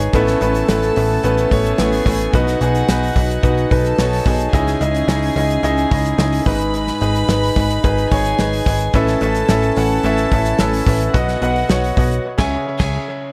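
A straight, steady pulse in four drives this earnest piano-driven pop fragment, cut from a longer piece. The damped 70s drum kit sounds dry and dark, with a tight kick, a medium-tuned snare and a rolled-off top on the hi-hat and crash. Beneath it, a plucky analog bass gives punchy, funky notes with a fast attack that then decays, sitting up front in the mix. The clear concert grand piano leads the accompaniment with an intimate, polished tone, deep low end, long sustain and audible action noise, while a soft, floating violin section carries a second line with a pure, bowed sul tasto sound. Dub echo colours the piano and drums within a light small-room ambience, and the harmony moves through Aadd9, B, C#madd9 and G#m before a band accent on C#m at 12.2 seconds, with the piano ringing on alone to 13.3 seconds.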